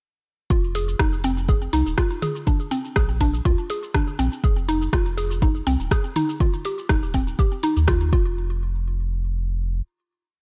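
A digital ambience surrounds this short, hypnotic afro house piece in F dorian, which runs at 122 BPM in 4/4 with a light 16th-note swing. From 0.5 s the track opens straight into a drop: an up-front electronic kick drives a deep four-on-the-floor pulse, while a tape-tinged afro-pop kit adds cabasa, metallic programmed hats, mid toms and rim clicks on the backbeat. A round, sine-based sub bass carries a dub-style line with fast attack and long sustain, pumping against the kick. Over it, a woody, mallet-like FM pluck with a sub octave plays a repeating 12-step arpeggio that drifts against the bar, coloured by chorus and delay and also pumping with the kick. The chords move from Fm7 to Bb7, back to Fm7 and then to Ebadd9. The drums fall away by about 8.2 s, and the sub bass rings on into a final hit that closes the piece at 10.4 s.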